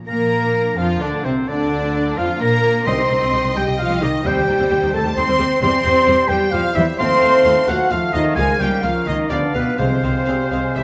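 A full orchestra sounds on a scoring stage with moderate reverb in this stormy, restless classical passage in 3/4, cut from a longer piece and played with rubato, its harmony turning to the minor from 5.6 s. A lush violin section sings the melody in the background over a very quiet, thumb-plucked harp ringing out arpeggios, while a clear oboe, a bright clarinet, a hollow flute and a second, more focused violin section weave further lines, and a distant, roomy bassoon and a close, hushed viola section supply the accompaniment. Dark French horns hold the sustained chords above a soft trombone section, a woody double bass section and a smooth cello section anchor the bass, and timpani struck with hard mallets enter at 2.9 s and again at 9.8 s.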